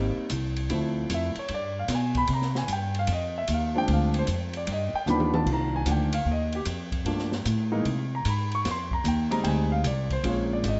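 A swung 4/4 pulse drives this short excerpt of small-group jazz in the swing and bop vein, its moody, smoky atmosphere cut from a longer piece. Upright bass and grand piano begin together, with the plucked bass sitting up front, woody and warm on steel strings, while the piano, natural and close, supplies the accompaniment across a broad range. The acoustic drum kit enters at 0.3 seconds, sitting lower in the balance with dark cymbals, a medium-tuned snare and a boomy kick, and a drum fill from 5.1 to 5.5 seconds marks the return of the opening strain. The harmony moves from major-seventh and minor-seventh colors toward altered dominants, then into richer extended chords in the second pass. A small room with moderate reverb surrounds the group, and the rough home-demo mix has a rolled-off, muffled top end.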